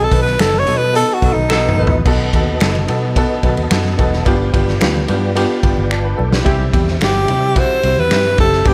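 A breathy, close-miked tenor saxophone opens this danceable, uptempo 1960s-style soul excerpt at 109 BPM with a band accent, riding over a brilliant, slightly detuned upright piano, a round fingered electric bass, a punchy raw garage drum kit, soft low-tuned congas, background finger snaps and a flute-like tonewheel organ with fast rotary speaker. A dark, loose horn section with tape echo adds brief lines, and drum fills arrive around 1.5 and 5.9 seconds. The chords move from B7 to G7 before settling on C at 6.5 seconds, and the sax returns shortly after, at 7.0 seconds.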